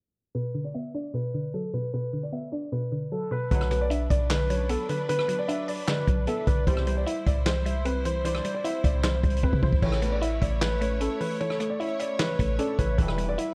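A worn, dark baby grand piano carries the melody over a woody, mallet-like synth pluck under a filter sweep in this melancholic half-time trap excerpt in B minor at 152 BPM, its piano action noise audible and softened by delay. At 3.5 s a punchy vintage drum kit with handclaps, rim clicks and hi-hat arrives alongside a deep, boomy 808-style bass and smooth symphonic strings, joined at 3.7 s by a mellow octave-layered synth lead in the background, while tight brass stabs punctuate the Bm and then each change through C and A to Em. The whole recording sits in a small room under a warbling old-cassette haze with drifting pitch and a rolled-off top end.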